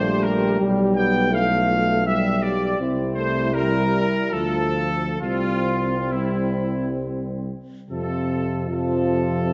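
A full brass band sounds together from the opening moment in this serene, tender classical excerpt, a hymn-like passage in F major and 3/4 that moves with rubato between 64 and 84 BPM. A bright, loosely blended trumpet section carries the melody up front, while a dark flugelhorn with vibrato sings a second line in the background, euphonium and a vibrato-tinged trombone fill in warm accompaniment, and a warm tuba with light vibrato anchors the bass. The ensemble is wrapped in the wet reverb of a concert hall, and the harmony arrives on an F chord at 7.9 s as a brief new section begins.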